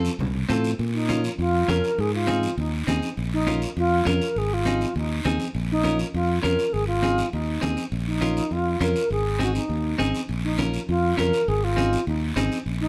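This driving, danceable cumbia excerpt opens at a brisk 202 BPM in Bb minor, with a bright, twangy clean electric guitar, a fingered electric bass and a raspy, saturated guiro sounding together from the start. Soft-handed, medium-tuned congas join at 0.2 s, their ringing tone sitting very quietly in a live room sound. At 0.9 s a mellow wooden-headed alto flute takes the melody up front, pure and expressive, with vibrato, a crisp attack and rolled-off highs. Underneath, the amped, direct bass sits prominently in the mix while the picked, compressed guitar accompaniment rocks between Bb minor and Ab chords throughout the section. The close, detailed recording places the group in a large studio with moderate reverb, and the passage is cut from a longer piece, ending at 12.9 s.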